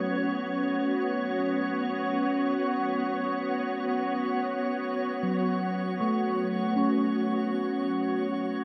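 Weightless ambient music at 78 BPM in a straight 4/4, cut from a longer piece, where a soft, pure organ-like pad holds sustained B5 chords up front through ensemble chorus and shimmer reverb, a mellow tine electric piano ripples arpeggios through delay, and a glassy, drifting harmonics texture fades in from 0.0 to 8.6 seconds in the background, all soaked in a huge, dreamy reverb.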